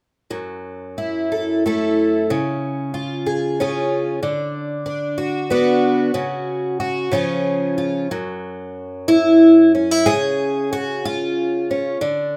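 A picked twelve-string acoustic guitar plays alone and up front, its bright, shimmering, octave-doubled tone carrying a haunting, intimate folk fragment in F# minor, tuned slightly low to A4 = 439 Hz. The playing moves in a loose, rubato 6/8 at about 62 BPM, drifting through F#m7, C#, Bm/D and C#sus4 before settling on a bare F#5 chord at 8.1 seconds and then moving away from any defined chord at 10.1 seconds. Light reverb gives the close, solitary sound a soft sense of space until the guitar stops at 12.4 seconds.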